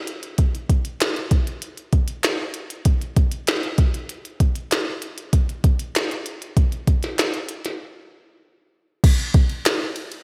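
A minimal electronic drum kit opens this short pop fragment at 0.1 s, setting a breezy, glossy mood at 97 BPM in a straight 4/4. The kit sits up front with a soft kick, a tiny snare, clicky hi-hats, ride and crash cymbals, all carrying a tape-warm tone, a large-room character and a gated reverb on top. A group handclap joins at 1.0 s, crisp, close and dry, but tucked very quietly beneath the drums. A break arrives at 7.8 s before the groove moves into a new section for the final stretch. The overall sound is bright and polished in a 1980s digital style, with only a light touch of reverb across the mix.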